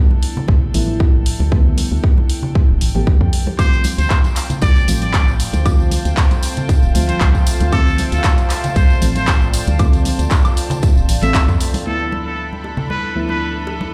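Deep house with a smooth, moody feel, cut from a longer piece: a soft, round FM electric piano plays chorus- and phaser-treated stabs with tape echo, while a rich, reedy chamber string section fades in and pumps from the sidechain, joined by bright, dry congas and bongos in the background. A punchy, overdriven electronic kick sits up front beside a layered house kit of handclaps, hi-hat and woodblock, over a hollow, organ-like FM bass. At 3.6 s a brilliant, nasal trumpet with a straight mute takes a breathy jazz solo and a jingly tambourine joins in the background, and at 4.8 s a deep, detuned ambient pad drifts in underneath. The whole mix plays as if through a big sound system in a bare room with large studio reverb, and a distant, lush violin section enters at 11.9 s just after the bass and kick stop at 11.6 s.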